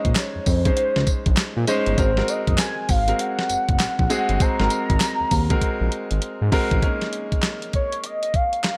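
R&B in a new jack swing style, this confident, slick excerpt moves at 99 BPM in Bb minor with a 16th-note swing, shifting from Bbm11 to Ab9 before landing on Bbm7 at 6.8 s. A velvety, wave-folded synth lead with chorus and vibrato carries the melody over a clear, vintage concert grand piano with deep bass, while an up-front 12-bit drum machine punches out a thumpy kick, fat snare, handclaps, hi-hat and tambourine. A detuned, saturated sawtooth bass holds the low end until 6.8 s, as a drum fill that starts at 5.6 s wraps up, all in a light reverb.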